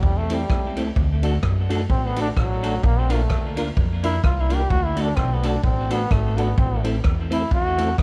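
A bright trombone solo with light vibrato opens this energetic, mischievous ska excerpt at 128 BPM in a swung 4/4, carried by a woody pizzicato upright bass and a roomy, distant big-band kit of boomy kick, ride cymbal and rim click; from 0.3 s a clean, picked hollow-body electric guitar with tape echo adds accompaniment and a dark, round tonewheel organ with key click, chorus vibrato and fast rotary speaker drops stabs in the background, over chords of Am, D and Bb in light studio reverb.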